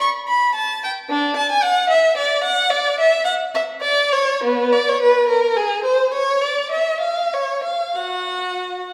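Classical baroque-style suite movement for unaccompanied violin, a flowing, dance-like passage in 6/8 at 63-74 BPM in dotted quarters with free rubato, tuned to A4 = 435 Hz, where a single rich-toned bowed violin plays alone for the full 8.9 seconds across a span from B3 to C#6, expressive with vibrato and portamento, sitting up front yet slightly distant in a wet recital-hall reverb of 1.6 s heard from further back in the room, in a brief passage cut from a longer piece.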